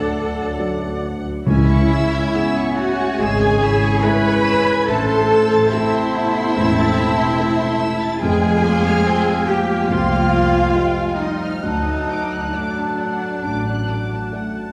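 Unhurried rubato at 71 BPM in 4/4, with uneven, breathing beats, carries this sorrowful, moving cinematic passage through D, C#m, Am and Fmadd9 before it returns to D. A dark violin section sings the high melody with vibrato and portamento. A rich second violin section, a mellow flute ensemble, a clear clarinet and a cor anglais with light vibrato add second lines, above a felt-muted upright piano with audible action noise, a lush viola section, distant French horns holding chords, expressive cellos and a bowed double bass section. Hard-mallet timpani sound very quietly from 1.5 to 2.7 seconds, all within a wet scoring-stage reverb heard from further back in the room.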